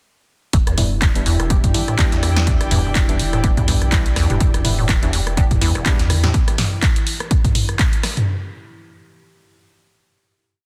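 Acid house at 124 BPM with a 16th-note swing, in E minor, trippy and driving, with a four-on-the-floor electronic kick and a punchy, tape-warm analog drum machine up front playing programmed closed and open hats, snare backbeat, rim, handclaps and low toms, all re-recorded in a large room. Beneath it a rubbery, resonant square-wave acid bass runs a 12-step loop with accents and slides that drifts against the bar. It is joined by a round sine sub bass playing a syncopated riff, both pumping under sidechain until 6.3 seconds. A warbling, lo-fi tape-like pad holds dark Em7 chords behind airy, breathy detuned pad textures and soft, dotted-rhythm chord stabs moved in parallel, all sitting inside a dense, heavily limited modern master.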